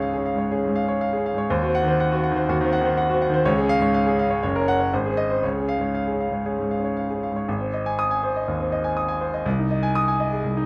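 A clear concert grand piano opens alone and carries this brilliant, sparkling virtuoso piano study from start to finish, cut from a longer classical piece. Set in 4/4 at around 121 BPM with a rubato feel, the music begins in D-flat major, moving through chords such as Cdim/Eb, Gb and Ab before returning to Db. At 7.5 seconds the harmony shifts to A-flat major, settling on Ab and then Ab/C as the passage closes at 10.7 seconds. The piano spans Gb1 to Eb6 and sounds natural and up front, with a deep bass anchoring its upper range. A moderate, large studio reverb gives the instrument a sense of space while keeping its detail distinct.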